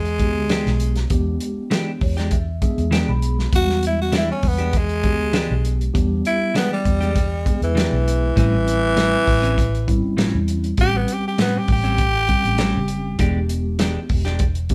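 A raspy, growling tenor saxophone solos up front through this gritty, laid-back straight-eighth soul blues excerpt, backed by a dry drum kit with a fat snare and tight kick, a round, foam-muted fingered electric bass, a mellow tine electric piano that adds a fill from 1.7 to 3.5 seconds, and dark, compressed clean electric guitar stabs over E7#9 and A7#9 chords, all played live together in one moderately reverberant room.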